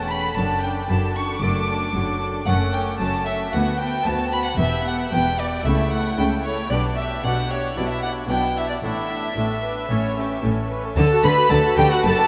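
In a straight 4/4 at 113 BPM, this lively, festive baroque-style concerto excerpt in D major sets a close solo violin with a nasal gut-string edge above a background violin section, a distant, dark second violin line, dark violas and a full, plucked harpsichord with two sets of strings in accompaniment, and rich cellos with double basses on the bass. The strings are all bowed with light period vibrato, and everything is bathed in a huge, echoing reverb as the chords move from D/F# through F#m, Bm/D and Em to an Asus4 and A that resolve on D at 11.0 s.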